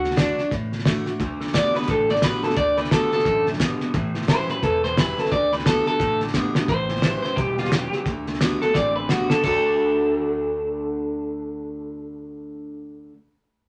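Lightly swung eighths at 175 BPM in 4/4 drive this rollicking, retro rockabilly excerpt in D major, moving between D and A7. A twangy, bright electric guitar through a small old amp carries the melody up front. A second, darker, slightly broken-up electric guitar enters at 1.2 s with a riff, joining a full-bodied picked steel-string acoustic with finger squeak and a woody pizzicato upright bass, both playing from the start in the background. A muffled, cloth-damped drum kit with a fat snare, tight kick and rolled-off top plays two fills before dropping out at 9.5 s, all within a moderate studio reverb.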